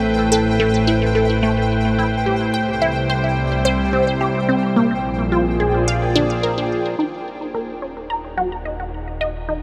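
A steady, straight 4/4 pulse at 108 BPM drives this hypnotic, mysterious stretch of sequencer-driven space music, cut from a longer piece and bathed in a huge, wet ambient reverb. An evolving wavetable pad sustains chords up front throughout, its morphing, warbling, vintage tone swimming in chorus and its own reverb as the harmony moves from Am7 to C, Bb7 and finally D#m. Beneath it, a fat analog bass holds the low end with a thick, detuned, wave-folded and saturated sound. From 0.3 seconds a resonant blip pluck plays a bright, squelchy riff, juicy and up front, its moving notch colored by phaser and delay, and a filter sweep on the arpeggiated synth marks the shift into the closing section at 7.0 seconds. In the background, a pulsing, tempo-synced gated texture shimmers on a single high note with chorus and reverb until it stops at 7.0 seconds.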